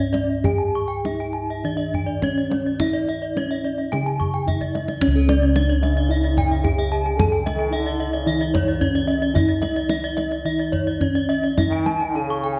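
A brilliant, ceremonial Balinese gamelan passage in C# pelog at 99-111 BPM opens with bronze metallophones, their paired tuning giving shimmering beats: a mellow melody played with padded disc mallets in a boxy small-room tone, above it a bright, airy arpeggio line and a dark, smooth one, both struck with horn mallets, over round, up-front bossed gongs in the bass and deep, close, dry kendang. A kendang fill at 4.6 seconds leads into a new section, and at 5.8 seconds a clear, punchy trombone with light vibrato adds a low second line. The whole sits in a moderate recital-hall reverb with a dark production.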